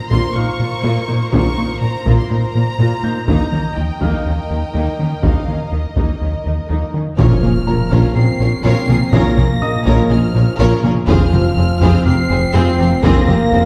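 Heard from further back in a wet scoring-stage reverb, this brooding, tense excerpt of a hybrid orchestral and electronic film score moves at 123 BPM in Bb dorian, with a lush vibrato violin section carrying a focused melody and a warm one playing a smooth second line over background violas, a very quiet expressive cello section, a rubbery, nasal square-wave bass riff, vintage hard-stick taiko drums and a brilliant concert grand piano adding tape-echoed texture, until at 7.2 s a huge, bright impact hits as mellow French horns sustain chords above a dark solo tuba and a distant double bass section.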